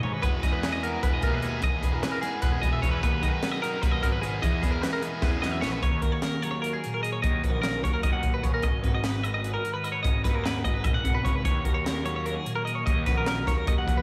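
Wistful yet bright, this math rock and midwest emo excerpt races along at 299 BPM in 7/8, with two clean, twangy twelve-string electric guitars, one in the background with chiming arpeggios soaked in spring reverb and the other up front picking chorus-tinged accompaniment, both carrying slapback echo over chords moving from Emaj9 to D#m7 and G#m7. A growly fuzz bass and a crisp fusion kit with a high-tuned snare, punchy kick and toms drive the piece, while a double-tracked overdriven guitar riff joins at 0.2 seconds and drops out at 5.8 seconds, just after a drum fill marks the shift into the second section. A lush hall reverb gives the mix a big arena sound.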